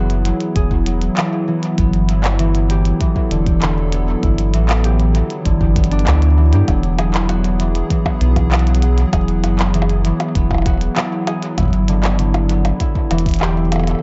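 Glitchy and playful, this 98 BPM IDM piece in 4/4 pairs a hollow, flute-like pad holding sustained chords through chorus, 12-bit sampler grit and sidechain pumping with fingerpicked concert harp arpeggios softened by a low-pass filter and tape echo, while an up-front round analog bass with tube saturation, a deep electronic kick entering at 0.6 seconds, and a glitchy kit of handclaps, clicky hi-hats and percussion blips sent through dub echo fill an echo-heavy mix with light reverb and a top end capped at 7.7 kHz, moving between Eadd9 and G6.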